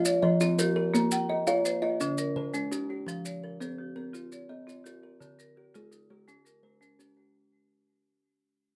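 Southern African traditional music in an mbira-style interlocking cycle, this rippling, warm excerpt moves at 112 BPM in a straight 12/8 and fades out across its full 7.4 seconds, drifting through chords such as Bbm, Fm and Db. An airy, up-front kalimba with short thumb plucks on a solid board shares arpeggios with a hard-mallet marimba on rosewood bars, whose percussive, band-limited vintage tone carries a tape echo. Grainy, compressed maracas enter at 0.1 seconds, and the parts sit in a moderate small-room reverb.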